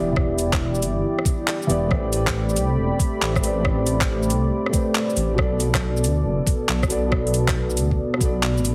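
Future garage at 138 BPM in 4/4, this short cut from a longer piece feels wistful and ghostly, its sixteenths swung at 66% and its chords moving from Em7 to Am11 at 1.9 seconds and on to Bm7 at 5.4 seconds. A felt-muted upright piano carries the accompaniment from B2 to D5, soft and intimate with audible action noise and a vintage, thick-felt tone, treated with delay and sidechain pumping. Alongside it, a dark analog pad holds sustained chords from A3 to B5, moody and full-bodied with a slow attack, a sub octave and chorus, pumping against the beat as well. The dark detuned saw bass sits up front between E1 and D2, deep, rumbling and saturated, its detuned tones beating as it too pumps with the sidechain. An electronic kick with a knocking punch and a garage kit of handclaps, metallic hi-hats, rim click and shaker enter at 0.2 seconds, both layered and tape-tinged. Light reverb and a digital ambience surround the mix, while heavy multiband compression gives it a squeezed, radio-like sound.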